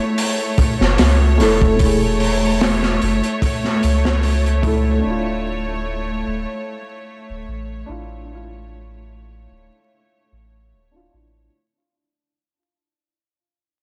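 Trip hop at 74 BPM with a light swing, smoky and hypnotic, this brief fragment of a longer piece sets a felt-muted upright piano, soft and intimate under harmonic tremolo, tape echo and a filter sweep, against a clear, biting string section holding sustained chords from F#m7 to Dmadd9. A crunchy, saturated breakbeat kit of kick, snare and hi-hat sits up front only until 4.8 seconds, while a deep, round dub sub bass enters at 0.8 seconds and carries on. Light reverb and vinyl crackle colour the mix as the whole passage fades out.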